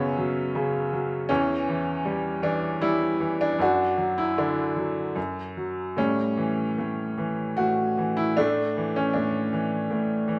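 Swaying freely in a rubato triple metre, this dark, wistful fragment of a lyrical classical piece features a bright upright piano alone, its woody, brilliant tone sitting up front with long sustain in a moderate recital-hall reverb as it drifts from a diminished chord through open add9 and suspended colours over about 10.4 seconds.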